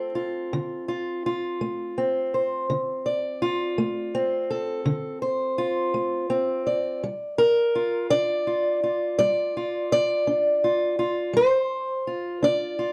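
Acoustic country blues in a soulful, smoky mood, this brief 12.9-second cut from a longer piece features a solo fingerpicked steel-string acoustic guitar with a boxy parlour tone and audible finger squeak, sitting up front in a dark production with light reverb as it moves from Dm7 to Gm7 at 7.0 seconds.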